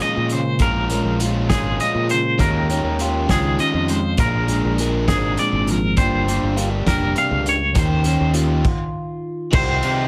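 Restless and intricate, this math rock and midwest emo passage moves at 67 BPM in 6/8, drifting through Bbm11, Eb9sus4 and Gm7b5 toward a stop from 8.6 to 9.5 seconds. A twangy, up-front clean guitar spins arpeggios through harmonic tremolo above a dark, fingered guitar accompaniment colored by phaser, while a bright, double-tracked overdriven guitar carves out a riff. A loose indie drum kit with a fat snare, punchy kick and pumping room sound, plus a growly fingered bass arriving at 0.2 seconds, anchor the mix under light reverb.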